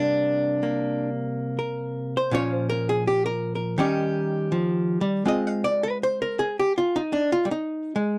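A dark, clean, compressed archtop guitar, picked and placed up front, plays this playful, relaxed solo jazz excerpt at 82 BPM in a swung 4/4, ranging from Bb2 to F5 over C5, Bbm, Eb7 and Ab6 chords across 8.2 seconds, its hollow-body tone carrying light reverb in a dry, close 1970s-style studio sound.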